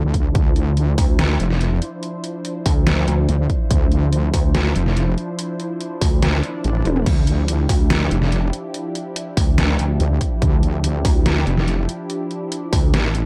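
Cut from a longer heavy wobble dubstep track, this menacing half-time passage opens on a lush, detuned supersaw pad holding sustained chords, alongside a saturated, resonant wobble bass thickened with chorus and overdrive. The pad sits back in the mix, colored by phaser, vintage 12-bit sampler grit, sidechain pumping and a low-pass filter, while the bass sits up front. At 1.0 seconds a second, pulsing pluck wobble bass joins with sine-based, compressed weight, also carrying chorus and overdrive. A punchy electronic kick and a dubstep kit with a deep snare, hi-hat, toms and crash drive the groove, both re-recorded in a large room. Midway through the kick drops out briefly while a faint electronic swell sounds in the background, and a drum fill lands at 6.9 seconds. The production is dark and dry, with little reverb.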